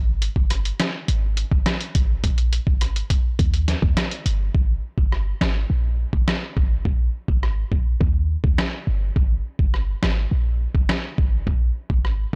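A lo-fi sampler-style drum kit features in this summery, bouncy dancehall excerpt at 104 BPM, its compressed, pitched-down sound muffled around a thumpy kick, medium-tuned snare, rim click and hi-hat, sitting up front from 0.2 seconds. Alongside it, a clean 808-style bass, also up front, offers a deep, boomy sine tone with a fast attack and mellow decay, ranging from G1 to Eb2 and entering at the very start. The overall sound has a blown-out, overdriven character within a digital ambience, and the piece moves into a new section at 4.5 seconds.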